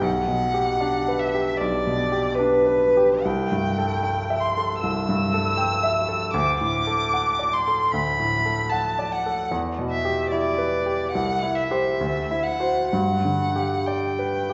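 Serene and lyrical, this short passage from a longer romantic classical piece pairs a single bowed violin with a baby grand piano in G major, moving in 4/4 at a gently flexible 62-79 BPM with a rubato feel. The violin carries the melody from B4 up to E6 with a rich, smooth, even tone and vibrato, sitting up front yet with a slightly distant quality. Beneath it, the piano supplies a bright, brilliant and polished accompaniment spanning B1 to G5, present and up front alongside the violin. The harmony begins on G/B, passes through Am7/C and D, and closes with a quicker turn from C through D9 to G at 12.9 seconds. Both parts play throughout the full 14.5 seconds, heard from further back in a recital hall whose wet reverb lingers for 1.6 seconds, with the top end softened so the sound stays mellow rather than crisp.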